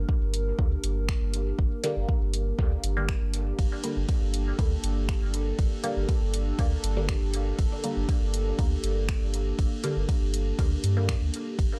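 A deep, layered electronic kick sits up front in this hypnotic, meditative dub techno cut at 120 BPM in G minor, joined at 0.3 seconds by a punchy analog drum machine playing finger snaps, hi-hat and ride cymbal, while a round, sine-toned bass, a muted, detuned sawtooth chord stab with phaser and dub echo, and a moody, slow-blooming analog pad with chorus and phaser all pump against the kick on a single Gm chord in a dry, gritty hardware recording.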